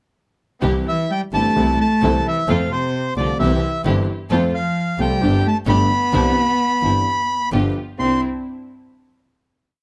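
A short, playful and elegant tango in C major at 131 BPM, with a rubato feel. At 0.6 s a warm baby grand piano, a biting bowed double bass and a distant, floating string section playing soft sul tasto stabs with tape echo set up a milonga rhythm. At 0.9 s a reedy, vintage-toned bandoneon enters up front with a motif-based melody, shadowed by a dark, woody cello with portamento, before the brief piece settles on a final Cadd9 chord at 8.0 s.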